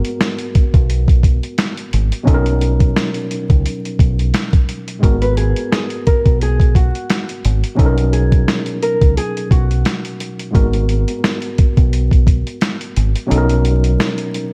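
Gritty, pitched-down sampler drums with a thumpy kick sit up front in this reflective, dark boom-bap hip-hop excerpt, joined almost at once by a round, punchy fingered dub bass. A worn, slightly out-of-tune tine electric piano, lightly overdriven with a cassette-tape tint, carries the G#m7 and Bmaj7 changes beneath a small, boxy fingerpicked nylon-string guitar melody with slapback echo from 5.2 to 10.5 seconds. Vinyl crackle colours the dark, warm production, and the kick drops out at 13.3 seconds.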